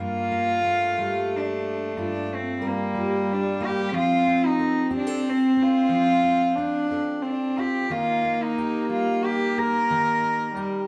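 In a gentle three-beat sway, this intimate, melancholic acoustic folk-pop ballad sets a full-bodied, fingerpicked jumbo steel-string guitar beneath two bowed strings played sul tasto and placed up front. A single cello carries the melody with a soft-attack, pure, floating sound, while a dark, boxy viola with an airy bow adds a second line, and all three play together through this brief passage cut from a longer piece. The harmony moves from Gm7 to F to Eb, and the trio plays live in one room inside a wet studio reverb.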